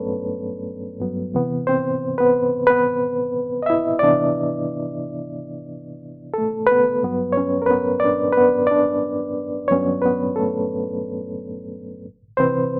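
A barky, reedy electric piano sits up front and carries this short soul fragment alone from start to finish. Its bright, lightly overdriven tone pulses with a fast tremolo through built-in speakers, moving between Gmaj9 and Cmaj7 over a lightly swung 4/4 feel. The mood is cinematic and smooth, with moderate studio reverb and the rough mix of a home demo.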